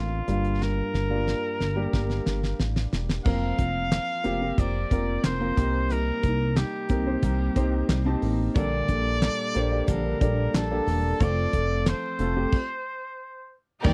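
A straight, steady four-beat pulse drives this anthemic, uplifting piano-driven pop, cut from a longer piece. A damped 1970s drum kit sits up front with a fat snare, tight kick, handclaps, hi-hat and crash, opening with a fill before a stop at 12.5 seconds. Beneath it a chorused synth bass mixes glossy, pulse-wave and sawtooth colours with a filter pluck and fast attack. A natural-sounding grand piano carries the accompaniment while a distant, roomy trumpet sings the punchy solo melody with vibrato. A picked steel-string acoustic guitar joins at 3.2 seconds with a full-bodied riff and audible finger squeak in the background. At 13.8 seconds an earthy, clear string section and a lush violin section with portamento arrive just as the passage ends, all within a dry, close studio sound.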